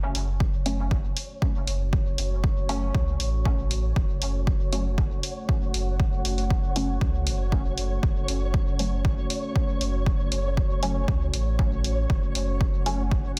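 Dub techno at 118 BPM in F# minor, this hazy, hypnotic excerpt rests on a single F# minor chord, with an overdriven, punchy electronic kick up front, a dry electronic hi-hat and a clean, smooth pure sine sub bass, both kick and hi-hat touched by studio reverb. Muted, detuned filtered dub chord stabs with chorus, phaser and dub echo enter at 0.7 seconds, while a deep, moody ambient pad with 12-bit sampler grit and a flickering, grainy granular texture sustain beneath, these three and the sub bass all pumping against the sidechain. The master is dense and heavily limited.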